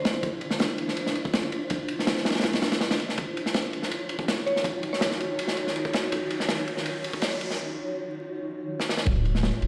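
Dark and atmospheric, this 163 BPM drum and bass and jungle excerpt builds over a blurred, evolving granular cloud pad moving from Dm9 to Ebm9, a deep, round, very quiet dub sub bass and a crunchy, saturated breakbeat kit of tight kick, medium-tuned snare and dark ride cymbal sitting up front, while a woody, mallet-like FM pluck with chorus and dub echo flickers in the background around 4.5 seconds, an electronic riser climbs from 4.7 to 7.6 seconds into a break with a drum fill at 8.8 seconds, all set in a large studio reverb with vinyl crackle as though played on a big sound system in a bare room.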